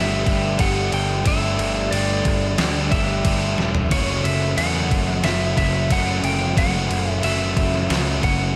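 A straight 4/4 pulse at 90 BPM comes from a detuned 8-bit drum machine that enters at 0.3 s, its sampler-style kit of thumpy kick, medium-tuned snare, toms and crash cymbal overdriven and re-recorded in a small room, sitting up front in the mix. This dreamy, wistful shoegaze and dream pop rock excerpt is built on an overdriven semi-hollow guitar riff, hollow-bodied and picked, bathed in lush chorus and placed up front. Underneath, a picked electric bass adds a round, fuzzy low end, mixing direct and amped tones with overdrive. A lightly driven lead guitar carries the melody in a high register, compressed and slightly broken-up, with tape echo trailing its notes and a warm tone. The harmony rests on Gsus2 until a drum fill at 3.6 s leads into F#m7 at 3.9 s, and the overall sound stays dry and close.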